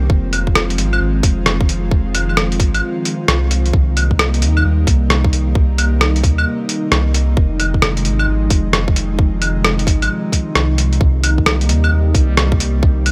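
A 16th-note swing at 132 BPM in 4/4 carries this wistful, nocturnal future garage piece in F minor, where a tight, layered electronic kick and a muffled, pitched-down, overdriven sampler-style kit of claves, hi-hat and rim click sit up front beside a round sine sub bass, an airy, breathy pad with chorus and sidechain pumping holds Fm7 and Cm7 chords, and a reversed, granular swelling texture enters very quietly at 11.7 seconds, all within light reverb.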